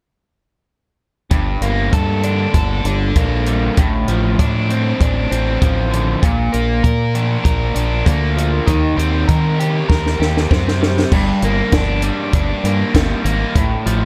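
At 1.3 s a biting, overdriven guitar riff, double-tracked and up front, arrives together with a growling, round fingered electric bass carrying its own overdrive and a compact, dry cocktail drum kit with a punchy kick, a high-tuned snare and dark cymbals. This cool, bittersweet indie rock passage in G minor moves at 98 BPM in a straight 4/4 through Gmadd9, Dm7/A, Bb and Eb6, with a drum fill from 9.9 s before the music settles on Gm at 11.1 s. The production is warm with light reverb, and the recording is cut from a longer piece.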